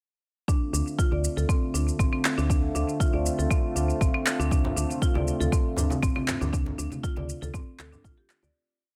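The recording is dry, with little reverb, and has a tape-warmed electronic kick and a layered shaker and handclaps set in a small room ambience. This hypnotic, driving afro house groove in D minor runs at 119 BPM in 4/4, with a light swing on the sixteenths and a single Dm7 chord throughout. A deep four-on-the-floor kick sits up front, the shaker and claps supply programmed hats and backbeat, and a soft, round FM bass with a dark, decaying tone and a fast attack plays a dotted rhythm under the sidechain pumping. Above it, a bright, percussive marimba struck with hard mallets repeats a 16-step arpeggio through digital delay, while a smooth, detuned vintage pad holds sustained chords with chorus and a warbling, wave-folded edge. Interlocking low-tuned congas with a thin, saturated skin join at 4.5 seconds, and the whole piece fades out from 5.9 seconds to its close at 8.5 seconds.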